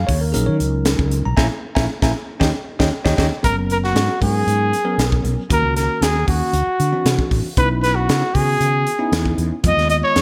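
The warm trumpet stands out, entering at 3.4 s to carry the melody with vibrato in a present, up-front jazz solo voice as the music settles into G# minor. This is an intense, funky stretch of electric jazz fusion at 116 BPM in a straight 4/4, cut from a longer piece. A bell-like tine electric piano supplies clean, direct accompaniment. A dark, round fretless electric bass holds the low end with an amped tone. The crisp acoustic drum kit sits up front with a high-tuned snare, punchy kick and hi-hat, given gated reverb and a pumping small-room sound. The opening bars feature a band accent from 1.4 s and a drum fill at 3.2 s, and the harmony moves through rich chords such as G#m11, D9 and C#m9, all framed by a bright 1980s-style digital production with light studio reverb.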